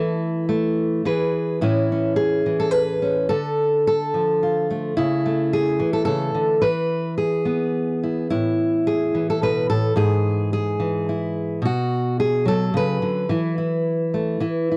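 A dry, close recording with a small-room ambience and a 1970s studio character frames this gentle folk piece, cut from a longer work, for a single fingerpicked steel-string acoustic guitar in 3/4. The guitar sits up front with a warm auditorium tone, spanning G#2 to B4 as it moves from a brief opening on Esus4 and E into a longer passage beginning at 1.6 seconds. Chords such as Dm, A/C#, E/G# and Bm pass by before the music settles back on Esus4 at 13.3 seconds.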